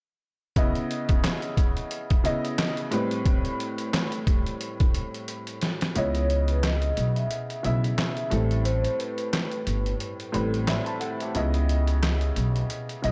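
A slightly detuned, vintage upright piano, filtered and tinted with cassette tape, opens at 0.6 s alongside a compressed, pitched-down sampler-style drum kit with a thumpy kick, medium-tuned snare, hi-hat and handclaps, setting a gritty, dark, swung boom-bap groove over minor ninth chords. After a drum fill, the kick drops out at 6.0 s as a woody, growly pizzicato upright bass enters up front, and a mellow, ringing vibraphone played with soft mallets carries the melody through filters and tape echo until 10.5 s. Small room ambience and a dark, warm production give this fragment of a longer piece a gritty, dark character.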